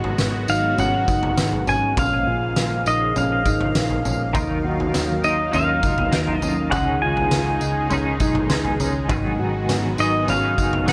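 A swirling, detuned analog pad with phaser and chorus opens this haunting, hazy dream pop excerpt, together with a dark, fingered electric guitar playing arpeggios through tape echo, a round, foam-muted picked bass, and an oversized, low-tuned drum kit whose boomy kick, fat snare, tambourine and toms sound gritty, saturated and up front yet roomy. At 0.5 seconds a bright pedal steel guitar enters with a fingerpicked slide melody in volume swells, carried on tape echo, and at 4.3 seconds a clean, hollow-body semi-hollow guitar adds compressed picked accompaniment colored by tremolo and analog chorus. The chords move from Abm7 through Bbm7, Ebmadd9 and Dbsus2 back to Abm7, all set in a light, small-room ambience.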